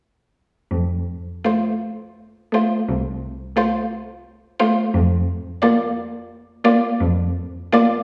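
A rich, even bowed cello opens this classical excerpt at 0.7 s, joined at 1.4 s by a smooth viola accompaniment and a second violin line with expressive portamento, then at 1.5 s by a clear, focused first violin carrying the melody with vibrato, in a lyrical, tender slow romantic string quartet movement in F major, moving in a rubato 12/8 at 53-60 BPM and heard from further back in a recital hall with wet reverb.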